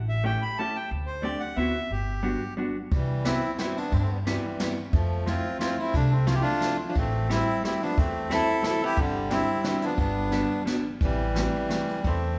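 A whirling, nostalgic musette waltz in C major at 178 BPM in 3/4, swung and rubato, in which a reedy, dry-tuned single-reed accordion carries the melody up front over woody pizzicato upright bass and the clean, compressed picked accompaniment of a vintage hollow-body jazz guitar, while distant brushed drums with dark cymbals and a boomy kick join at 2.9 seconds and a miked, amplified archtop guitar adds a second line in the background from 6.3 seconds, set within the wet reverb of a recital hall.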